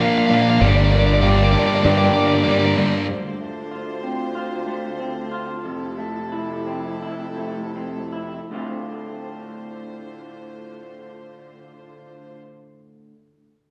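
A growling, overdriven fingered electric bass sits up front in this cathartic, melancholic post-rock excerpt in D minor, a brief, heavy presence in the opening seconds. Around it, a bright distorted electric guitar and a dark, sludgy distorted guitar play a picked riff together until 3.1 s, while a crunchy overdriven guitar carries a short melody through tape echo that drops out at 2.7 s. A felt-muted upright piano adds very quiet, mellow arpeggios with audible action noise in that first stretch. Throughout, an electric guitar through a small old amp, slightly broken-up and lo-fi, fingers arpeggios bathed in lush chorus and tape echo, and a clear chamber string section holds earthy, bowed chords with light vibrato. The tempo sits between 77 and 97 BPM in a straight 4/4 and slows down from 3.1 s, as the harmony moves from Bb and Gm7 through Dm7 and Fmaj7 before settling back on Dm7. A dark production and a recital hall reverb give the whole piece a deep, spacious feel.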